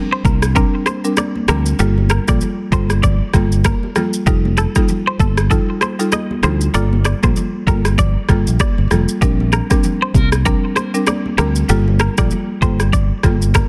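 A round, punchy fretless electric bass with a subtle chorus sits up front in this breezy, sunny afrobeats excerpt at 97 BPM in Bb major, with a swung sixteenth-note feel. A produced afro-pop drum kit with a deep kick, rim click, shaker and soft clipping on the snare drives the groove, while a woody, buzzing marimba plays dry accompaniment and a bright, twangy clean electric guitar riff carries a digital delay. Very quiet, high-tuned congas ring under soft hands as the chords move between Bb69, Gm9 and F9, set in a digital ambience with a dense, heavily limited modern master.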